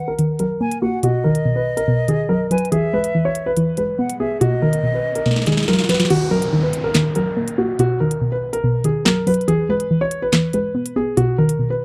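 A dark concert grand piano leads this dark, menacing drill excerpt at 142 BPM in a half-time feel, its mellow, intimate melody carrying audible action noise under a low-pass filter, while a soft, round pluck with chorus holds the accompaniment and a hollow, airy flute with vibrato and digital delay adds a second line until 5.6 seconds. An electronic drill kit with a sharp snare, crisp hats, handclaps and crash cymbal sits up front over an Ebm, B and E progression, and a riser builds beneath a drum fill before the kick drops out at 6.1 seconds. The production is dark with light reverb, and an electronic riser and downlifter sit low in the mix.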